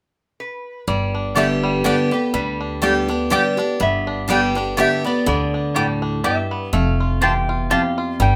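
A moderate small-room reverb gives this short bluegrass excerpt a close, natural sound. It is driving and rustic, moving at 123 BPM in 3/4 with a swung eighth-note feel, centred on G mixolydian and tuned slightly below standard pitch. A nasal, metallic lap resonator guitar played with a slide opens the melody at 0.4 seconds, and a twangy, percussive banjo joins it in a lower register at 0.9 seconds. At that point a bright, full-bodied picked dreadnought guitar sits up front in the accompaniment, and a woody, thumpy pizzicato upright bass holds the low end. A mellow, round mandolin adds picked stabs from 1.3 seconds. The harmony rests on G before shifting to F near the end of the cut.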